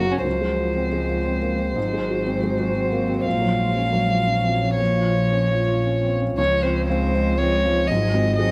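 Closely miked in a moderate recital hall, this tender, hopeful neoclassical piece in a rubato 3/4 sets a rich, vibrato-laden solo violin with slapback echo up front over a focused bowed cello in the background, a soft, boxy felt-muted upright piano with audible action noise, a smooth bowed double bass, and a very quiet, dark sawtooth ambient pad that enters at 0.1 seconds.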